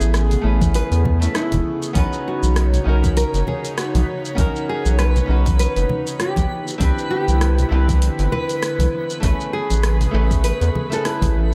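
Swung sixteenths at 99 BPM in 4/4 carry this warm, smooth sunset chillout excerpt, where a fingerpicked nylon-string guitar melody and a dark flamenco guitar accompaniment, both trailed by diffuse ambient delay, sit over an airy, breathy chorused pad, an up-front round analog bass, a deep house kit of hi-hat, rim click and shaker, low-tuned congas in the background, a soft electronic kick entering at 0.6 s, and a twinkling granular texture that sparkles in from 2.4 s, all moving through Amaj9, Bmaj9 and Cmaj9 in a light digital ambience.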